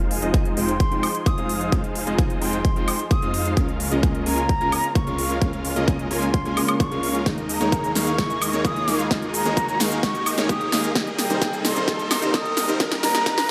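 A punchy, overdriven electronic kick sits up front in this anthemic, powerful excerpt of festival progressive house at 130 BPM in F minor, alongside a crisp, layered big-room kit of snare, hi-hat, shaker and woodblock that breaks into a fill at 7.3 s; huge, bright supersaw chords with 12-bit grit, sidechain pumping and a sweeping filter drive the build over Fm7, Db6, Ebsus4 and Cm, supported by a thick, menacing detuned saw bass, a soft felt-muted upright piano with audible action noise, a very quiet warbling unison pad, and a faint riser entering at 4.8 s, while an airy, distant concert flute carries an expressive melody through delay.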